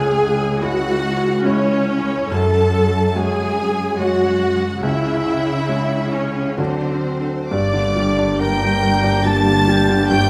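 The excerpt opens on a felt-muted upright piano, soft and intimate with audible action noise, joined from the start by a distant symphonic violin section on a second line, an up-front viola section carrying the accompaniment, a ringing concert harp playing arpeggios in the background, and a distant cello section holding the bass. This is a cinematic piece in F# minor and 3/4, drifting in a rubato feel between roughly 62 and 73 BPM, with a longing, sorrowful mood. The harmony moves through C#m, F#madd9 and D7 before turning to Gm at 7.5 seconds, where the texture grows. There a studio violin section enters high with the melody, lush with vibrato and a smooth top, while an airy silver flute takes a second line, a mellow French horn section sustains chords in the background, and a bright, intense double bass section reinforces the bass. A distant, roomy oboe adds another second line at 8.4 seconds, and moderate scoring-stage reverb gives the whole ensemble a sense of space.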